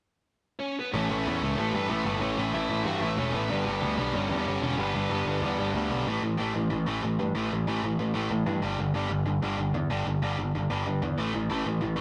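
Rebellious and energetic, this punk excerpt in A mixolydian charges along at 187 BPM, with a dark, high-gain lead guitar carrying the melody through distortion and tape echo from 0.6 s, a tight, bright distorted guitar and a growly, punchy overdriven bass driving up front from 0.9 s to the end, and a dark overdriven rhythm guitar in the background until 6.1 s, when the chords shift from A and G to A5 and G5 power chords, all captured as a rough rehearsal-room recording with tube saturation and light reverb.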